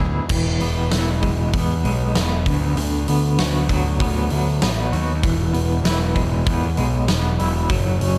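Set in a small room ambience, this restless, cathartic alternative rock excerpt moves at 97 BPM in a straight 4/4, tuned to A4 = 437 Hz, over the chords E, D6 and E. A fuzzy, overdriven electric bass sits bright and up front beneath a clean, twangy fingered electric guitar playing arpeggios with tremolo. At 0.3 seconds a huge acoustic drum kit enters with a fat snare, punchy kick, hi-hat and crash cymbal ringing in a big, natural room.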